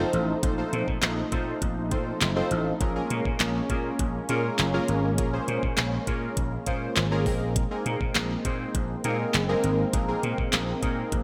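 A detuned sawtooth keyboard opens this dance-pop excerpt up front, round and fast to strike, decaying under a filter sweep, with chorus and phaser giving it a shimmering edge. Beneath it, a mellow, soft-edged pad holds sustained chords in the background with chorus and a long release, while a growly, amped slap bass sits forward with a bright, punchy bite. From 0.1 seconds, an electronic R&B kit brings a knocking kick, a sharp snare, handclaps and metallic hi-hats. Sidechain pumping makes the keys, pad and bass breathe around the beat in a straight four-beat groove. The harmony moves from F7 to Bbm7 and then Abadd9, giving the piece a bittersweet yet confident mood. The sound is a rough home demo mix with light reverb and a digital ambience.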